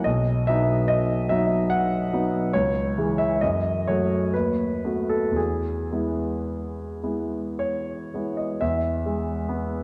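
In a 3/4 metre with a free, rubato feel at 50-74 BPM, this short romantic character piece for solo piano unfolds in E major with a hopeful, lyrical mood. A warm, polished grand piano sits up front and present, spanning B1 to F#5 as it moves through B, C#m, F#m and B7/D# before settling on E at 5.4 seconds. A wet concert hall reverb with a 2.5-second decay surrounds the instrument, and the fragment, cut from a longer piece, ends at 9.8 seconds.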